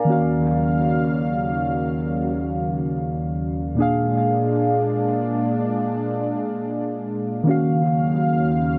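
Free time lets this short contemporary R&B fragment drift rather than pulse, its sensual, longing mood settling in Eb minor, tuned to A4 = 443 Hz. Muted, felt-like synth keys sit up front as the accompaniment, their soft, dark tone carrying a fast attack that decays, with chorus and tape echo trailing each touch. Alongside them, a lush unison pad, also up front, holds sustained chords, thick and warbling with a vintage, detuned character, a slow attack, a long release and its own chorus. The harmony moves from Ebm9 to Bb7 at 3.8 seconds and back to Ebm9 at 7.5 seconds, and the synth keys slip in a brief fill at 8.4 seconds just before the cut. A moderate echo chamber reverb with a digital ambience wraps the echo-heavy mix.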